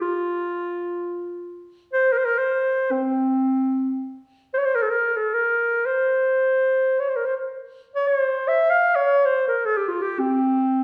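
A wet recital hall reverb, with a decay of 1.3 seconds, surrounds this short passage cut from a longer piece, and the room is heard from further back. Within that space a solo clarinet sits up front, its tone mellow with a soft attack, played in a classical style. The music is Turkish makam ensemble music in free time, set in C makam hicaz with tuning at A4 = 442 Hz. The clarinet ranges from C4 to F5 across the full 10.8 seconds, stating a phrase and then returning to it from 4.2 seconds. The mood is festive yet stately, carried entirely by the single voice of the clarinet.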